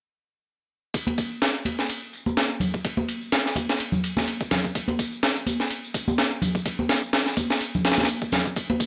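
A light reverb and digital ambience frame this gritty, raw breakbeat excerpt at 126 BPM in 4/4, with a 55% swing on the sixteenths. The sampler-style, compressed drum kit sits up front from 0.9 seconds, its thumpy kick, high-tuned snare and ride cymbal all thinned by high-pass filtering, while a very quiet, tape-warm electronic tambourine plays alongside it. Ringing, saturated congas played with hard hands join at 1.1 seconds, adding an acoustic edge to the percussion.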